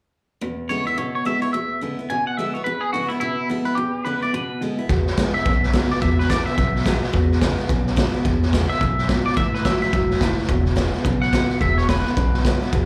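A twangy electric guitar leads up front, bright and clean, carrying the melody through phaser, slapback echo and tape echo in this rowdy, upbeat rockabilly excerpt with a swinging 4/4 feel. Underneath, a picked steel-string acoustic guitar with fresh strings and a full-bodied dreadnought sound picks out the accompaniment, finger squeaks audible, while an electric guitar through a small old amp sits in the background with a slightly broken-up, lo-fi, compressed riff. At 4.9 seconds an upright bass enters with woody, thumpy gut-string pizzicato, joined by a raw garage drum kit whose punchy kick, medium-tuned snare and hi-hat sound saturated, gritty and up front with a rolled-off top. The harmony sits on E7 before moving to A7 and back to E7. The whole thing comes across as a live gig heard through the venue's PA, wrapped in light club reverb, and it is cut from a longer piece.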